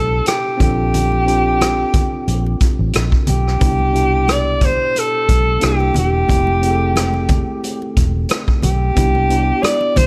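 Lush and warm, this short stretch of 1970s-style soul moves at 90 BPM in 4/4 with a gentle 16th-note swing, centered on C major and tuned slightly flat to A4 = 438 Hz. An alto saxophone carries the melody from the start, its tone marked by vibrato and a roomy, pop-style solo voice. A worn tine electric piano, clean but a little out of tune, supplies the chords beneath it, moving from a rootless Cmaj9 through Bbmaj9, back to Cmaj9, then C7 and Fmaj9 before settling on Cmaj9 again. A foam-muted fingered electric bass sits up front with a dark, round, punchy sound. The vintage drum kit enters at 0.3 seconds with hi-hat, kick and rim click, its punchy kick and rolled-off top giving a natural studio-room feel, and very quiet, ringing congas join at 0.6 seconds, close and dry. Light studio reverb adds polish to this passage, which is cut from a longer piece.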